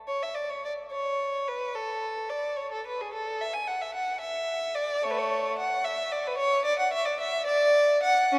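Classical in a baroque style, this short fragment of a suite movement for unaccompanied violin moves in a flowing, dance-like 6/8 at 73 beats per minute counted in dotted quarters, with a rubato feel that lets the pulse breathe. A single bowed violin carries everything as the solo voice, sounding from 0.1 to 8.4 seconds across a range from A3 up to G#5. Its tone is rich and smooth, with vibrato and an even, up-front presence that keeps the line clear. The instrument sits in a wet cathedral reverb with a long 4.6-second decay, so each phrase hangs in a spacious, resonant halo. A faint mains hum lingers beneath the performance, a small blemish under an otherwise graceful, lilting passage cut from a longer piece.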